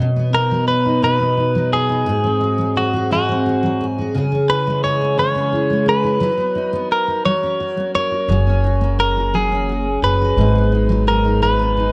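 Swaying in a straight 6/8 at 58 BPM, this romantic pop ballad excerpt in B major pairs a full-bodied, double-tracked picked steel-string acoustic guitar with a clean, compressed, direct-recorded electric guitar melody bathed in spring reverb, while a woody pizzicato upright bass joins up front at 8.3 s as the chords move from B through G#7 and C#m to F#add9 and G#m7, all in a dry, close 1970s-style studio sound.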